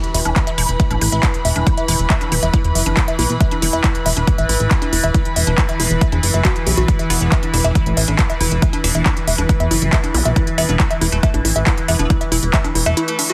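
A straight 4/4 pulse from an overdriven, up-front electronic kick and a techno kit of handclaps and smooth hi-hats drives this intense psychedelic trance excerpt, where a punchy, funky analog bass sits beneath a dark, woody wave-folded pluck riff with digital delay, while an airy, breathy pad adds texture and a resonant, overtone-sweeping drone with phaser holds sustained chords, the pluck, pad and drone breathing with sidechain pumping until a metallic, aggressive wobble bass slips in quietly with dub echo at 7.1 seconds and a faint electronic zap flickers at 10.1 seconds, in a dense, heavily limited mix.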